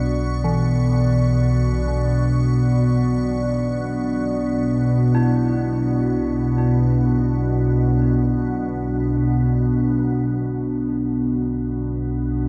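Cavernous and unsettling, this dark ambient drone in free time, cut from a longer piece, floats over Bmadd9 before settling on Bm at 10.0 s. A calm, detuned organ-like drone sits up front in the low register, beside a deep, moody analog pad of wave-folded, sustained chords with lush chorus. A crystalline glass pad shimmers high above until it fades out by 10.0 s, while a bronze gamelan-type metallophone rings arpeggios through delay in the background from 0.4 s, all bathed in a wet cathedral reverb.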